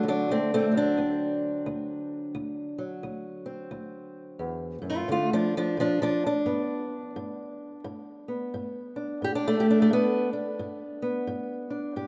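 Gritty and swaggering, this acoustic country blues clip moves at 87 BPM in 4/4 with a swung eighth-note feel, tuned slightly flat to A4 = 439 Hz. A fingerpicked old ladder-braced acoustic guitar plays alone and up front for the full 12.1 seconds, its dark, woody tone and old strings spanning D2 to G4 as it moves from D7 to G7 at 5.1 seconds. A wet plate reverb and a rough home-demo mix give this fragment of a longer piece a loose, lived-in character.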